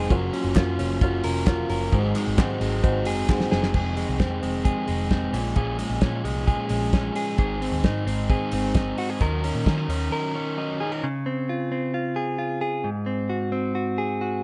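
Jangly indie pop with a youthful, nostalgic mood, led by a compressed clean electric guitar playing arpeggios through analog delay, over a crunchy overdriven guitar, a round foam-muted picked bass and a cloth-damped, thuddy drum kit with a tight kick and dark cymbals. A worn, woody upright piano with audible action noise and crisp group handclaps sit in the background at the start, the piano dropping out at 3.8 seconds just after a drum fill. The bass and drums break at 10.1 seconds, leaving the delayed clean guitar and the overdriven guitar, which drops out at 11.0 seconds, after which the clean guitar carries on until 14.4 seconds in a dark, lightly reverberant mix.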